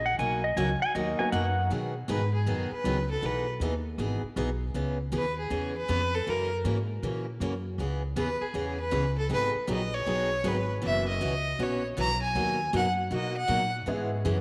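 A swung 4/4 groove drives this playful, down-home western swing snippet, with a woody, thumpy pizzicato upright bass on gut strings sitting up front from the first beat. A twangy, compressed lap steel opens with a short slide phrase in its upper register, then steps aside at 1.7 seconds. A bright, full-bodied picked dreadnought acoustic guitar carries the accompaniment throughout, with the odd finger squeak off its fresh strings. A jangly, detuned honky-tonk upright piano adds brief vintage touches near the start and again at the very close. From 2.1 seconds a clear, smooth fiddle takes the lead with light vibrato, bowed evenly and close by a single player, over a relaxed run of seventh and sixth chords. A generous echo-chamber reverb gives the small combo a roomy, old-time glow.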